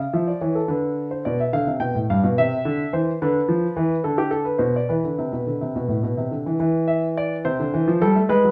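In a straight 6/8 pulse at 71 BPM, this contemplative yet driving baroque-style two-part invention for solo grand piano, tuned to A4 = 436 Hz and cut from a longer piece, sets a dark, mellow concert grand with deep bass up front in moderate studio reverb, moving through chords from A and Bmadd11 to G7 and C before shifting into a second section at 6.6 s that settles on Dsus2/E and Am/C.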